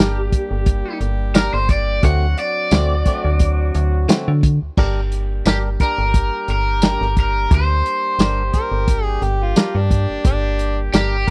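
A bright, overdriven electric guitar leads this brooding, soulful fragment of straight-eighth soul blues, taking a picked solo over the first 4.8 seconds with a slapback echo on its melody. The groove sits at 88 BPM in 4/4 with a light sixteenth-note swing, in G harmonic minor, moving from G minor to D7 and back to G minor. A dry, muffled, lo-fi drum kit with dark cymbals, a tight kick, a medium-tuned snare, hi-hat, crash and tambourine sits up front beside a metallic, digital FM bass with a fast, decaying attack, while a twangy, compressed clean guitar recorded direct plays stabs with a warbly pitch drift. A close-miked horn section holds sustained chords with light vibrato and octave doubling, and a gritty, amplified harmonica with tongue slaps adds a second line from 8.5 to 10.8 seconds. The close, 1970s-style studio recording carries little reverb.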